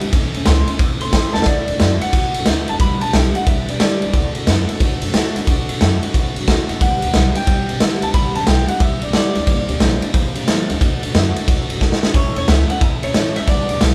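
A rowdy, upbeat rockabilly excerpt opens with the full band already playing together in one room, as a brief clean electric guitar solo rings out in the opening seconds. The raw garage drum kit sits up front with a boomy kick, a medium-tuned snare and ride cymbal, sounding saturated and gritty in a bright stone room that pumps around it, its top end rolled off; fills mark the shift into the main section at 1.5 seconds and again near 12 seconds. Underneath, a woody, thumpy pizzicato upright bass anchors the swung groove, while a picked dreadnought acoustic guitar with fresh strings picks out full-bodied chords from A through D and G, darkening briefly on a G minor seventh. The lead melody comes from an electric guitar through a small old amp, twangy, slightly broken-up and lo-fi, playing high phrases that come and go in bursts before returning for the final stretch. A moderate studio reverb gives the whole performance a live, lively feel.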